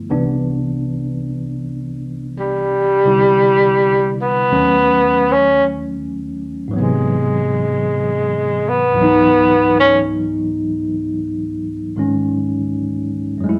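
Romantic and intimate, this slow jazz ballad at 54 BPM swings gently in 4/4, cut from a longer piece. A barky, clean tine electric piano, heard through its built-in speakers, comps through Cmaj9, D#m7b5, G#7alt and C#m11 for the full 13.6 seconds. Between 2.4 and 10.0 seconds a breathy tenor saxophone takes the solo up front, with a whispered subtone, soft attack, scooped notes, vibrato and a vintage character, all set in a moderate large-studio reverb.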